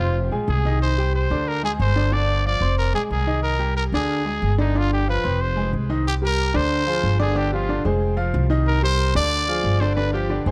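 Salsa with a danceable, passionate drive, where a raspy, growling trumpet carries the melody up front with light vibrato, plate reverb and tape echo, a brilliant baby grand piano with long sustain and audible action noise supplies plate-reverbed accompaniment, and a woody, thumpy upright bass plucks a dark, growly line underneath through a short excerpt cut from a longer piece.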